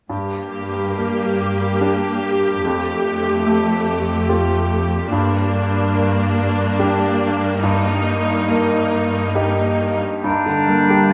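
Bathed in a vast, echoing hall of huge reverb, this moving, longing cinematic excerpt in G minor drifts at a rubato 72 BPM in 3/4, as a brilliant baby grand piano with audible action noise plays alongside a lush, up-front viola section and a rich cello section below, until at 10.2 s a vintage-toned solo clarinet, an airy flute section set far back and ringing fingerpicked harp arpeggios arrive together, with a punchy oboe following a moment later, to bloom on the closing chord.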